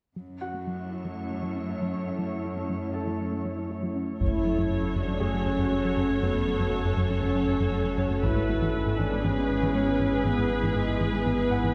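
A glassy FM pad with ensemble chorus and its own reverb carries the opening of this brooding, futuristic hybrid of orchestral and electronic film score, along with a soft, warbling pluck playing very quiet arpeggios. A lush cello section holds the bass in the background, and a brilliant concert grand piano adds delayed texture. At 4.2 seconds a warm French horn section enters at the front with sustained chords, joined by an intense, bowed viola section with vibrato, a round analog bass riff and a deep, clean sine sub bass. A taiko ensemble struck with hard sticks lands two very quiet bursts, at 4.2 and 8.2 seconds, the second arriving as the harmony moves from F#m7 to E/G#. The piece sits in a wet scoring-stage reverb heard from a distance, and this cut from a longer piece ends with the melodic parts still sounding.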